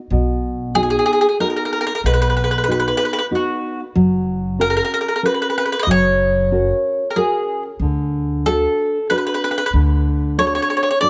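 A light reverb gives this short excerpt from a longer Italian folk serenade a gentle sense of space, with the mandolin sitting up front. The mood is romantic and wistful, moving at 94 BPM in a lilting 3/4 with a faint swing on the eighth notes, tuned slightly low to A4 = 437 Hz. A nylon-string guitar provides the accompaniment from the opening moment, its dark, full-bodied, thumb-plucked tone carrying the character of old strings. An upright bass plays pizzicato on steel strings, holding the low end until 10.6 seconds. The picked, double-strung mandolin enters at 0.8 seconds with a woody voice to carry the melody over a harmony that moves from B to F# and then to D.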